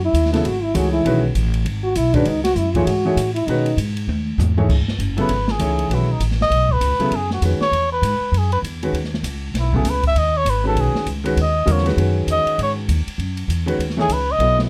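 Searching and hypnotic, this modal jazz excerpt swings at 198 BPM in F# dorian on an F#13sus4 chord: a dark, bucket-muted trombone with vibrato and scooped notes solos until 3.8 s, then a fill from the smooth, boomy-kicked drum kit leads into a veiled, breathy cup-muted trumpet solo entering at 5.2 s, while woody pizzicato upright bass and an intimate grand piano with audible action noise accompany in a close, dry, detailed sound.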